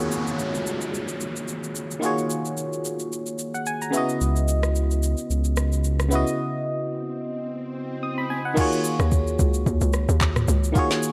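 A swung sixteenth-note groove in four drives this soulful, hypnotic amapiano fragment, laid down by a tape-warm R&B drum kit with a soft kick, woody snare, rim click, shaker, handclaps, toms and crash, under a biting FM electric piano, treated with chorus, that voices minor eleventh chords. An electronic downlifter and swell run through the first 8.6 seconds, and a round, deep analog bass surfaces briefly at 4.2 seconds. After a break, a swell leads into the drop, where a hollow, bouncy log drum bass punches up front.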